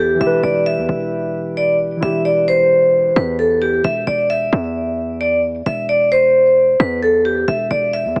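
A half-time hip hop groove at 132 BPM in 4/4 sets a melancholic, brooding mood in E minor, with a punchy, heavy 808-style bass giving sine-toned hits that decay. Up front, a metallic, ringing vibraphone carries the melody over an Em chord, shaded with slow motor vibrato, while muted, warbling synth keys with a dark, vintage, chorused tone accompany until 3.9 s, after which the harmony drops away and the vibraphone and bass continue to 8.2 s. Light reverb and a small room ambience give this fragment of a longer piece a small-speaker sound.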